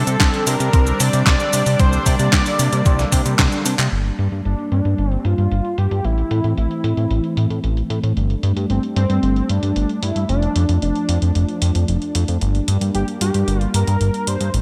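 This italo disco excerpt, cut from a longer piece, opens with a bold, detuned sawtooth unison lead carrying the melody over a smooth, slow-attack pad of sustained chords, a fat analog bass with a filter sweep sitting up front, and a bright, twangy electric guitar playing picked arpeggios through an envelope filter in the background. At a danceable 113 BPM in straight 4/4, a thumpy, overdriven electronic kick and a clean 12-bit drum machine with a medium-tuned snare, handclaps, hi-hat, cabasa and crash cymbal drive the groove, the drum machine softened by low-pass filtering and gated reverb. The kick drops out during a drum fill that begins at 3.4 seconds, and the guitar follows once the fill ends, leaving the lead, pad, bass and drum machine to carry the second section from 3.9 seconds. That section moves through Gm, Am, Gsus2 and Dm/F before returning to Gm, after the opening Csus2. The lead adds vibrato and analog chorus with delay, and the whole track has a nostalgic, glossy 1980s-style digital sheen with light reverb.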